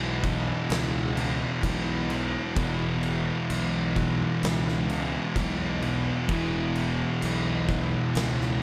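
Sludgy and ominous, this short stoner and doom metal fragment crawls along at 64 BPM in a straight 4/4, built on a single E5 power chord. Two thick fuzz guitars, one dark and one warm, grind out the riff between E2 and E3 through heavy distortion, joined by a crunchy overdriven guitar that is double-tracked and sits in the background with them. Underneath, a fingered electric bass growls with bright, overdriven fuzz, recorded direct and amped, reaching down to E1. An oversized, low-tuned acoustic drum kit comes in at 0.2 seconds with a punchy kick, fat snare and crash cymbal, its gritty, saturated sound carried by a bright stone room that pumps around the hits. A small room ambience surrounds the whole band, and the riff runs through to the cut at 8.6 seconds.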